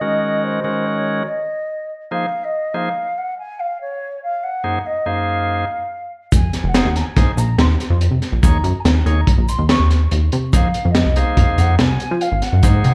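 A punchy, funky analog bass with a plucky filter and ring-modulated edge arrives at 6.3 seconds, driving this bright progressive instrumental in 5/4 at 142 BPM alongside a crunchy, saturated breakbeat kit with a punchy kick, high-tuned snare and hi-hat, and a grainy egg shaker tucked in the background. From the opening, a mellow, distant wooden flute carries the melody with a soft attack, vibrato, and slapback and tape echo, over a reedy, clean tonewheel organ accompaniment with its own slapback echo. The chords move from Ebm7 through Gbmaj7 and Fm7 to Ab69, heard as a live gig through the venue's PA with light club reverb, in an excerpt cut from a longer piece that ends at 12.9 seconds.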